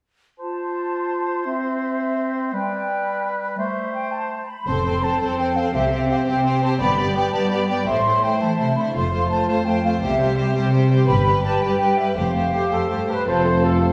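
This cinematic excerpt opens with woodwinds at 0.4 seconds: an airy flute ensemble high above a bright, close-miked clarinet and a punchy oboe, moving through F, C, G and A minor in a heroic, triumphant 6/8 at 112 BPM in F lydian. At 4.7 seconds the clarinet and oboe give way to a lush string section, where bowed violins carry an expressive melody with vibrato over a second violin line, focused violas and a rich, even cello section. The double basses anchor the low end with a soft attack while the flutes keep sounding above the strings through the same chord cycle. Near the close the harmony brightens to Fadd9, dark, tight trumpet stabs break in at 12.5 seconds, and mellow horns and trombones add sustained chords as the music lands back on F. The whole ensemble blooms in a reverberant hall, giving the orchestra a grand, spacious sound.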